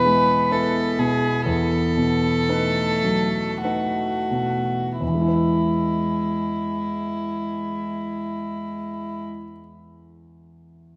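A serene, slow romantic movement for piano trio opens at once with a floating, sul tasto violin melody, a close, slightly nasal cello line beneath it, and a vintage-toned grand piano accompaniment up front, all in a gently rubato triple metre that slows over the first 5.0 seconds. The bowed strings enter softly and stay pure, the violin smooth at the top, as the harmony moves away from home and settles back on its tonic chord, all inside a generous, wet scoring-stage reverb. Violin and cello fall silent at 9.2 seconds, leaving the piano alone until this excerpt ends at 11.0 seconds.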